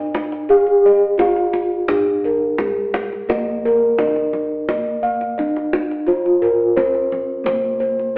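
Heard through a thin, telephone-like filter, this short cut from a longer Javanese gamelan piece sits in the damp echo of a stone room, with the ensemble playing live together. The mood is serene and shimmering, moving at 86 BPM in a straight 4/4 and tuned to Bb slendro. A bronze metallophone struck with padded disc mallets carries the melody, its paired tuning producing airy, ringing beats. One set of bossed gongs weaves dark, smooth arpeggios above, while another sits up front with round, beating bass tones. A tight, close kendang played with hard hands joins at 0.1 s and plays until about 8.1 s, just before the cut ends.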